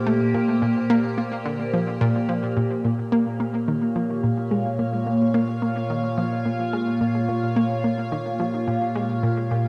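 A straight 4/4 pulse at 108 BPM drives this expansive, cosmic piece of sequencer-driven ambient space music in Bb dorian, cut from a longer work and tuned slightly flat. An up-front, morphing wavetable pad holds sustained chords through chorus, phaser and its own reverb, while a round, detuned analog pluck with a bright filtered snap repeats a low riff through chorus and analog delay, the harmony shifting from Bb to Bbm at 2.6 s. At 5.9 s a very quiet, tempo-synced gated texture pulses on a single high note, all set in a moderate spring reverb with the character of a home cassette recording.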